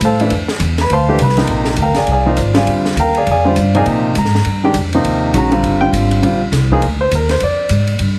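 Swung eighths drive this brief modal jazz fragment at a brisk 203 BPM in 4/4, with a searching, open mood in B-flat mixolydian as the harmony moves from F through Bb13 and Eb back to Bb13. A polished, present grand piano comps up front while a woody, thumpy pizzicato upright bass anchors the low end, and an acoustic drum kit of hi-hat, ride, snare and kick sits further back with dark cymbals, a high-tuned snare and a boomy kick. The whole trio plays from the start to about 8 seconds, framed by a moderate large-studio reverb and a heavily compressed, radio-like sound marked by lossy artefacts.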